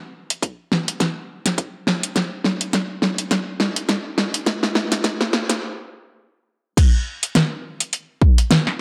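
Swung sixteenths in 4/4 drive this swaggering, playful glitch hop fragment, where an up-front, layered pop drum kit with a fat snare, metallic hi-hats and crash cymbal runs a build-up fill alongside a punchy, high-pass-filtered electronic kick until the drums stop at 5.6 seconds, then crash back in for the drop at 6.8 seconds, all set in a moderate digital room reverb with a gritty hardware character.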